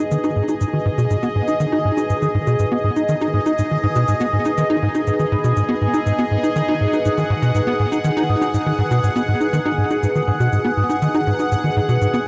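Drenched in a huge, dark reverb, this 12.3-second excerpt of sequencer-driven space music at 121 BPM in G# minor feels expansive and mysterious, resting on a single G#m chord. A tight, punchy sawtooth sequencer bass drives a riff up front with ensemble chorus and tape echo, while a swirling, detuned analog pad holds bright, nasal sustained chords through phaser and chorus. Vibraphone arpeggios ring out metallic and boxy through tape echo, and cabasa and bongos with an electronic, analog character sit in the background.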